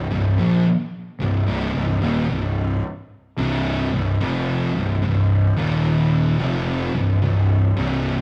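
Metal at its most brooding and sludgy, this short fragment of a longer piece crawls along in a straight, heavy four-beat pulse. Two thick fuzz guitars each carry the riff for the full 8.2 seconds, both picked and distorted across a low range from C2 to F3: one sits up front while the other stays in the background. Underneath, a fingered electric bass covers the bottom register between C1 and Bb1, its overdriven tone bright, growly and punchy, with a direct, amped character. The whole passage rests on a single minor chord, giving it a heavy, stuck-in-place weight. A wet stone-room reverb and the rough, saturated sound of a rehearsal space add a raw, cavernous feel.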